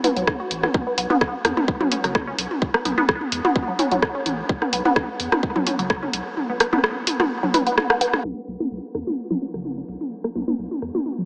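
Soaked in a huge ambient reverb and dulled by a low-pass filter into a dreamy, small-speaker haze, this hypnotic, clinical minimal techno excerpt in straight 4/4 rides on a squelchy, detuned blip pluck riff treated with phaser, subtle chorus, analog delay and sidechain pumping. Up front, a garage kit's hi-hats and rim clicks and a minimal click kit's rim clicks and delayed toms sit beside a tight electronic kick that stops at 6.0 seconds, while a thick, saturated sub bass pumps underneath. From 8.2 seconds a filter sweep washes over the synth arpeggio.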